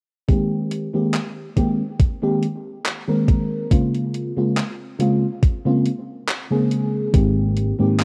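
A mellow FM electric piano opens the track with soft, full-bodied Abmaj9 and Bbm9 chords, blurred by lush chorus, cassette tape grit and tape echo, over a thumpy, overdriven electronic kick and a gated 80s drum machine's handclaps and hi-hat. This nostalgic, hazy vaporwave fragment moves at a slow 70 BPM with a light swing on the sixteenths, its rough home-demo cassette mix kept dry and close. A dark, round fretless bass enters only at 7.1 seconds, as the chords return to Abmaj9.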